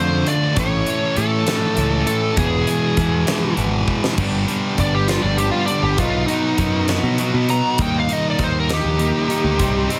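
Quiet-loud alternative rock in a slow 6/8 at 66 BPM, restless and bittersweet, with a smooth overdriven lead guitar up front carrying the melody over a bright, twangy twelve-string arpeggio, a high-gain distorted riff alongside a dark fuzz guitar riff in the background, and a growling overdriven picked bass. A huge arena drum kit with a fat snare and punchy kick enters at 0.3 seconds, and a fill at 3.9 seconds launches the lead guitar solo at 4.2 seconds as the chords move from D minor through A and E to G, B and E-flat. The mix has light reverb and a heavily compressed, radio-ready sound, cut from a longer piece.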